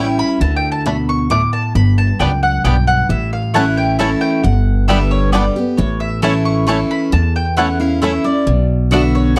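A woody, up-front pizzicato upright bass anchors this rustic, virtuosic bluegrass excerpt in 3/4, alongside a bright, full-bodied dreadnought guitar whose picked accompaniment carries audible finger squeak. A twangy, percussive fingerpicked banjo and a double-strung mandolin with slapback echo share the melody, and a second mandolin adds stabs from 2.2 s. The dry, close recording has a 1970s studio character with little reverb.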